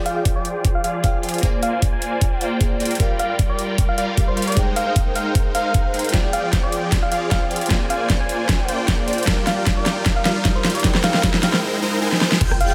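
Lush, sidechain-pumped supersaw chords open this emotional future bass passage, their huge, detuned sawtooth stack run through a low-pass filter that sweeps across the whole build-up. Glassy digital keys sit in the background with chorus, tape echo and a vintage 12-bit sampler grit, while a soft, round, FM-style struck lead carries the melody with vibrato, chorus and delay, its own filter sweeping as well. At 153 BPM in a half-time feel with a light 16th-note swing and tuning of A4 = 437 Hz, the harmony cycles through Fm69, Bb9, Gm7 and Abmaj9. An overdriven, knocking electronic kick and a layered big-room kit with a huge snare, metallic hats, rim clicks and crashes sit up front, re-recorded in a small room, and a drum fill begins at 6.1 seconds. A very quiet riser builds underneath until an impact lands at 12.4 seconds, where a deep, boomy 808-style bass and an airy, dreamy arpeggiated lead arrive just as this cut from a longer piece ends. 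The mix carries a light reverb.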